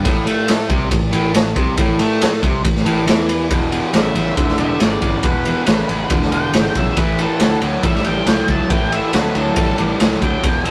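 A straight, driving 4/4 at 139 BPM carries this swaggering blues rock power trio and southern rock excerpt, where a raw garage drum kit with punchy kick, dark cymbals and gritty saturation sits up front beside a bright, double-tracked overdriven semi-hollow guitar riff and a growly picked electric bass, moving from A5 to E at 3.5 seconds and A at 7.0 seconds, while a dark octave-fuzz lead guitar enters at 4.0 seconds for a solo melody, all captured in a rough rehearsal-room recording with light reverb and tube saturation.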